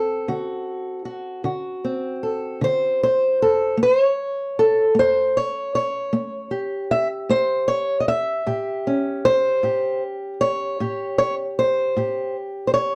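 Gritty and rollicking, this short fragment of acoustic country blues in a straight 12/8 features a single fingerpicked, ladder-braced acoustic guitar playing solo throughout its 12.9 seconds. The old strings give it a dark, woody, boxy voice that sits up front, moving from D7 to A7 at 3.8 seconds within a moderate studio reverb.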